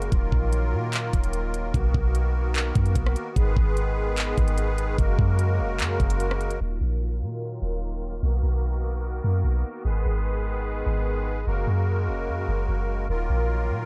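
Dreamy and floating, this half-time atmospheric cloud-rap excerpt sets a reedy, shimmering musette accordion holding sidechain-pumped, low-pass-filtered chords over a deep, round 808-style bass and a crisp trap kit of knocking kick, hi-hats, handclaps and rim clicks that drops away at 6.6 seconds, leaving the accordion under a filter sweep along with the bass as the D#madd9–Bmaj7–G#m–F#add9 cycle repeats in a dark digital ambience.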